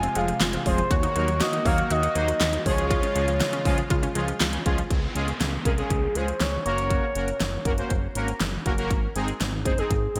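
A punchy, up-front pop drum kit drives this upbeat, bright synth-pop passage at 120 BPM in Db major, its fat snare, metallic hats and handclaps splashed with gated reverb and given the weight of a large room. Over it, a smooth, expressive portamento lead carries the melody throughout, its sawtooth-and-triangle tone darkly shaded by vibrato, chorus and digital delay. A thick, detuned analog bass holds the low end with mellow filter sweeps and a touch of ring modulation, while bold, evolving synth brass enters at 0.2 seconds to fill out the accompaniment. In the background, a brassy analog pad and a round, bright analog pluck playing arpeggios shimmer through the opening until 4.9 seconds, and an electronic downlifter then sounds in the background from 4.9 until 8.9 seconds. The harmony moves from Fm and Ebm toward Db, Gb and Ab, all set in a lush hall reverb with a glossy 1980s-style digital sheen, in a passage cut from a longer piece.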